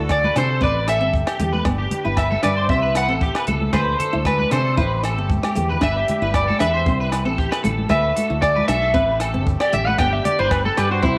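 A bright, clean electric guitar carries the melody up front through lush chorus and slapback echo in this carefree, sunny highlife guitar-band excerpt, moving at 115 BPM in G major over a cycling D, Am7, G, C progression. Beneath it, a slightly broken-up, twangy electric guitar picks arpeggios with its own ensemble chorus and slapback, while a dark, round fingered bass sits punchy and up front, and a fingerpicked steel-string acoustic guitar plays accompaniment in the background with a very quiet, reedy accordion holding sustained chords. A compact cocktail kit keeps dry, natural time on hi-hat, punchy kick and rim click, with a short fill at 5.3 seconds, as ringing agogo bells and medium-tuned congas sit in the background, all set in a moderate spring reverb.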